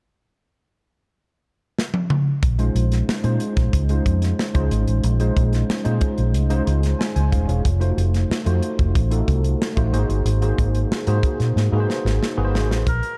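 A straight 4/4 groove at 92 BPM drives this bittersweet, urban slice of polished 1980s jazz-funk pop in Bb minor, cut from a longer piece. A crisp fusion drum kit opens with a fill at 1.8 seconds, its punchy kick, medium-tuned snare, hi-hat and toms sounding airy and up front, and it rolls into another fill near the close. A vintage muted fingered electric bass arrives at 2.4 seconds, dark, round and amped, sitting up front as the harmony moves from Bbm11 to F7b9 and then Ab9. A worn, slightly out-of-tune tine electric piano carries the accompaniment, lightly overdriven and colored by analog chorus as if heard through built-in speakers, and it takes a brief fill of its own midway. At 12.9 seconds a reedy, breathy melodica sounds a single Bb4 just as the clip ends, all inside a small room ambience and a dark production.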